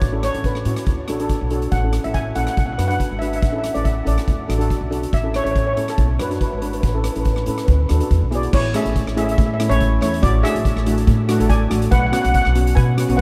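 Festive and carefree, this calypso excerpt moves at 141 BPM in A major, with a lead steel pan carrying the melody and cello pans filling in the accompaniment from 0.1 seconds, both struck with medium rubber sticks for a metallic, shimmering tone. A woody, dark pizzicato upright bass on steel strings anchors the low end, while an up-front street-band drum kit with a boomy kick, hi-hat, rim click and crash cymbal keeps the groove polished. Huge ambient reverb places the band in a vast, echoing space, and the harmony circles between A, D6 and Bm before shifting to a second section at 8.5 seconds that ends on a suspended Bsus2 chord.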